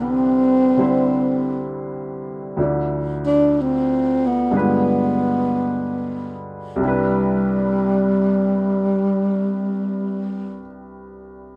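Jazz ballad in C major with a late-night, romantic mood, played with a swung 4/4 feel at a slow 47-73 BPM that slows down through the first 6.8 seconds, tuned a touch low at A4 = 437 Hz. Up front, a dark, breathy tenor saxophone carries the melody with subtone, vibrato, soft attacks and scooped notes in a close, whispered, intimate voice. A clear baby grand piano accompanies with natural, long-sustaining chords moving from Cmaj9 through Dm and G7b9 back to Cmaj9, sounding on alone after the saxophone stops at 10.6 seconds, all in light reverb.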